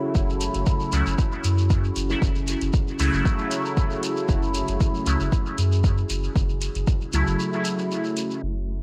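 An overdriven electronic kick sits up front in this hazy, hypnotic dub techno excerpt, its deep, layered thump carrying the feel of a large room until it stops at 7.0 seconds. The piece moves at 116 BPM in a straight 4/4 in F# minor, resting on a single F#m7 chord. A juicy, detuned sawtooth polysynth plays bright, resonant stabs with a filter sweep, colored by chorus, phaser, dub echo and sidechain pumping. Beneath it, a round, soft sub bass and a dark, nasal analog pad with a slow attack, lush chorus and long release both breathe with the same pumping. A grainy, close shekere ticks along, while a dry vintage rhythm box, with metallic hi-hats and crash cymbal, sits in the background, and a faint, breathy wind-like texture appears at 8.7 seconds. Vinyl crackle, a low-pass filter and light reverb give the whole mix a murky, worn haze.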